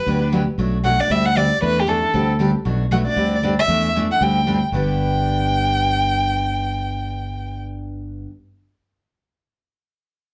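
A brisk swung 4/4 at 232 BPM drives this lively, playful excerpt of acoustic string swing in G major, cut from a longer piece. A bowed violin carries the melody up front with vibrato, portamento and a soft, expressive attack, while a bright, full-bodied picked steel-string acoustic guitar comps through chords such as Gmaj7, Bm7 and suspended D7 and E7, with a warm, direct fingered electric bass underneath. The players sit a little back in a club room with a short reverb, the violin dropping out at 7.6 seconds and the guitar and bass ringing on to 8.3 seconds.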